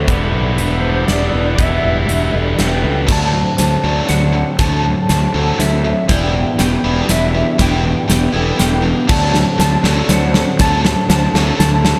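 Opening on a reedy, breathing pedal harmonium, a very quiet lo-fi electric guitar through a small old amp picking arpeggios, a ringing vibraphone with delay in the background, a biting overdriven guitar riff and a growly fuzz bass up front, this melancholic, cathartic post-rock fragment in 3/4 brings in a huge arena drum kit with bright cymbals and a punchy kick, adds a dark, clean lap steel melody with slide and volume swells from 0.6 seconds, and at 3.1 seconds hands the riff to a tight distorted guitar as a drum fill drives a build-up over Em7 and D7 chords in a dreamy, reverb-soaked mix.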